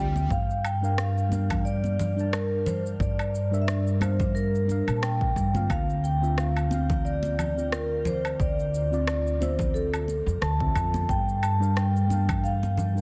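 A relaxed 89 BPM groove in 4/4 with a gentle 16th-note swing sets up this wistful, smooth sunset chillout excerpt, cut from a longer piece. An up-front, woody upright bass anchors the low end throughout. An electronic cabasa, woodblock and rim click, whose snare carries a touch of soft clipping, enters at 0.2 seconds together with bright, hard-handed congas sitting in the background, and a punchy, layered electronic kick drum follows at 0.3 seconds. Over this, a mellow FM electric piano supplies round, full-bodied, dark accompaniment colored by chorus, phaser, a low-pass filter and shimmer reverb. The vibraphone, played with soft mallets and a slow motor vibrato, carries the ringing, metallic melody up front, trailed by tape echo and shimmer reverb. The harmony drifts from Gm7 to Dm9 at 5.7 seconds and back to Gm7, all set in light digital ambience with a dense, heavily limited modern master.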